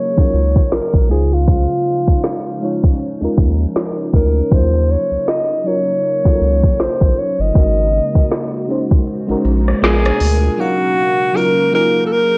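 Moody and full of longing, this contemporary R&B fragment from a longer piece moves with a gently swung sixteenth-note feel over dark Eb dorian chords. A breathy alto saxophone carries the melody up front in a jazz style, its subtone colored by light vibrato, scooped notes and an analog delay. Beneath it, an FM electric piano with a soft pad layer supplies lush, detuned, chorused accompaniment, while a glassy, ethereal FM pad holds warbling sustained chords with a slow attack and its own built-in reverb. A smooth, produced drum kit with a soft kick, woody snare and smooth hats sits up front alongside a round, deep analog bass shaped by a filter sweep through the opening 10.6 seconds. The kick drops out at 9.1 seconds, and after the drums and bass stop around 10.5 seconds, the saxophone, piano and pad carry on alone to the end. The overall sound is dry and gritty, with transformer saturation and a low-pass filter giving it a dusky, hardware-driven character.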